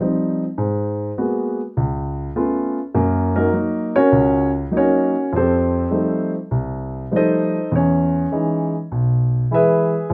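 A swung eighth-note feel at 101 BPM in 4/4 gives this short solo jazz passage its lilt, loosened by a rubato touch. A single dark concert grand piano carries everything from 0.0 to 10.1 seconds, up front and natural, with a mellow tone and deep bass reaching down to B1 and up to E5. The harmony moves through rich extended and altered chords, opening on Eb69 and passing through Abm9, Dbaug7, Gb6 and F9 before landing on Emaj7. The mood is warm and swinging, and the piano sits in a wet club reverb with a short 0.5-second decay that lends a small-room intimacy. Tuned slightly low at A4 = 439 Hz, the clip is cut from a longer piece.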